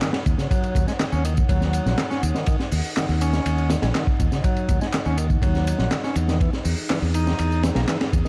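A straight breakbeat groove drives this funky, energetic excerpt, with a crunchy, gritty drum kit of punchy kick, high-tuned snare, hi-hat and dark ride sitting up front, joined by dry, overdriven electronic handclaps and tambourine and a saturated fingered electric bass that enters at 0.3 seconds. A reedy, bright tonewheel organ plays a riff with lo-fi sampler grit and delay, while a moody, detuned analog pad holds sustained chords in the background, pumping against the beat, as the harmony moves from Ebm7 to Emaj7 at 6.4 seconds. A very quiet downlifter falls away in the opening 2.5 seconds, and the whole piece carries a dark, small-room character with vinyl crackle.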